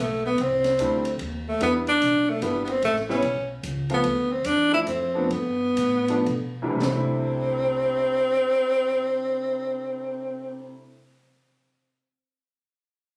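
A clear tenor saxophone carries the melody up front in this relaxed, swinging small-group jazz excerpt, its soft attack and vibrato set off by a plate reverb. It moves in a lilting three-beat swing over a pizzicato upright bass with a woody, steel-string tone. A smooth, vintage-sounding upright piano supplies accompaniment from 0.8 seconds, moving through chords such as C69, Em7 and Dm9 before returning to C69. The acoustic drum kit, with dark cymbals, a high-tuned snare and a boomy kick, plays from 0.4 to 7.0 seconds, and the group slows down between 4.0 and 6.8 seconds. Captured on a phone in the room, the sound carries club reverb and compression, which lend it an intimate, live feel.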